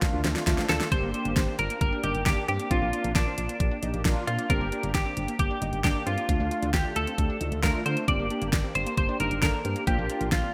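A bright, clean semi-hollow electric guitar sits up front with a picked, hollow-body melody coloured by analog chorus, carrying this melancholic yet driving synth-pop excerpt in G minor at 134 BPM. Beneath it, mellow synth brass adds detuned sawtooth chords with chorus, a very quiet unison pluck sketches lush arpeggios, and a solid FM bass gives a punchy, round low end from 0.1 seconds. A layered electronic pop drum kit with a knocking kick and fat snare opens with a fill before the section proper starts at 0.9 seconds, all set in a lush hall reverb with a bright 1980s-style digital sheen.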